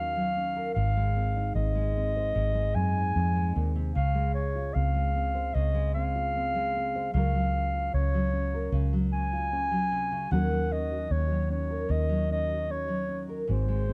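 A straight, unhurried 4/4 pulse carries this acoustic folk-pop ballad, a single section cut from a longer piece and lasting about 13.9 seconds. The mood is nostalgic and tender. A solo clarinet sits up front with the melody, played in a mellow, classical style with a smooth top. Beneath it, a nylon-string guitar supplies thumb-plucked accompaniment with a dark, full-bodied tone, while a vintage fingered electric bass, foam-muted and amped, sits forward in the mix with a round, punchy sound. The harmony moves from Ebm7 through Ab, Dbmaj7 and Gbmaj7/Db before returning to Ebm7, and with little reverb the production feels close and dusky.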